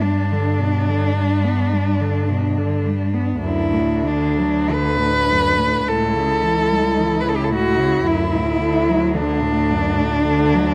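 Classical and lyrical, this short excerpt for a cello ensemble of four bowed players moves at a slow, rubato 45-56 BPM in 4/4 and G major, tuned to A4 = 443 Hz, with a serene mood. The leading cello carries the melody up front, its tone rich and focused with vibrato. Beneath it a darker cello sings a close, expressive second line with vibrato and portamento, while another cello fills in the accompaniment with a soft attack and gliding portamento. The bass cello sounds more distant, its expressive line shaded with vibrato and portamento. All four play together throughout the 10.7 seconds over a progression from G to D, then A7/C# at 5.9 seconds, and back to D, captured by close, detailed microphones with light reverb.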